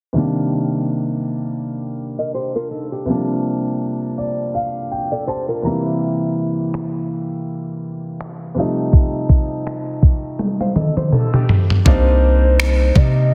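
Contemporary R&B with a moody, late-night feel, built on a clear, intimate concert grand piano whose action noise and boxy low end sit up front under a filter sweep, joined briefly by a dark, fingerpicked nylon-string guitar with digital delay and finger squeak. A thumpy, tape-warm 12-bit drum machine of finger snaps, kick and toms arrives at 6.7 seconds, its snare softly clipped, and plays a fill into the closing section. At 11.9 seconds the hi-hats are muted as a deep, sine-like 808 bass and a hollow, woody clarinet-like synth lead with chorus and vibrato enter, all within a dense, heavily limited mix with light reverb.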